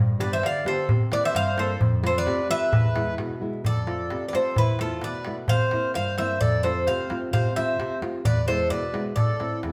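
A picked bouzouki leads this dramatic, driving excerpt of Greek folk music, its metallic double strings, some doubled at the octave, sitting up front as it carries the melody. Beneath it, a nylon-string guitar in classical style supplies the accompaniment, thumb-plucked with an audible finger squeak and also placed close to the listener, sounding from the very start at 0.0 s before the others join at 0.2 s. An accordion adds a reedy, dark second line with slow beating in its tone, smooth and set further back in the balance. A metal-shell darbuka keeps a crisp, close and dry percussion part in a straight two-beat metre. The band plays live together in one room, wrapped in the wet reverb of a stone space, and the harmony moves through chords such as C7, F and Esus4 before settling on Am as the clip cuts off.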